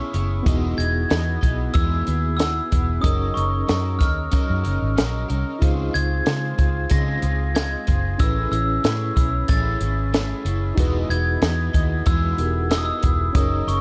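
A dark, dry bedroom-pop production frames this sunny, nostalgic indie pop excerpt at 93 BPM in 4/4, where a bell-like glockenspiel with soft plastic mallets carries the melody through analog chorus over a twangy, slightly broken-up electric guitar, a worn, slightly out-of-tune tine electric piano with fast tremolo and cassette-tape grit, a round, foam-muted vintage bass up front, and a compact cocktail kit with a punchy kick and high-tuned snare, all moving through Emaj7, Gb6, Dbmaj7 and Amaj7.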